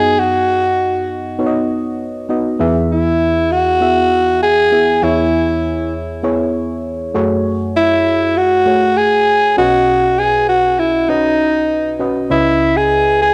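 Uplifting and glossy, this straight 99 BPM pop excerpt in 4/4 sets a raspy, gritty alto saxophone lead, close-miked and up front with cassette tape grain and tape echo, against a mellow FM electric piano whose fast-attack, decaying tones carry a noise layer and plate reverb. Both parts play throughout, moving over chords from B/F# through E, C#m7/E, F#madd9 and Badd9 before a brief new section arrives at 12.3 seconds on C#m9. The whole sits in a wet studio reverb with the character of a home cassette recording, a faint mains hum lingering underneath.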